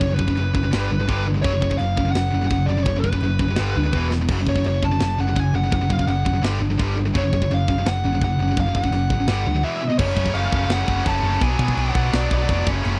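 Heavy metal at 168 BPM with a relentless, heavy mood, cut from a longer piece: two bright, distorted rhythm guitars (one high-gain and set in the background, the other tight) drive riffs over power-chord movement between F#5, G5 and E5, while a dark, bluesy overdriven lead guitar with slapback echo carries the melody. A round, up-front hollow-body short-scale bass and a tight acoustic metal kit with bright china and crash cymbals, a medium-tuned snare and a tight kick anchor the groove, with a drum fill at 4.1 seconds. The harmony shifts to F#m at 10.0 seconds and to Bm at 11.4 seconds, all captured in a dry, close 1970s-style studio sound.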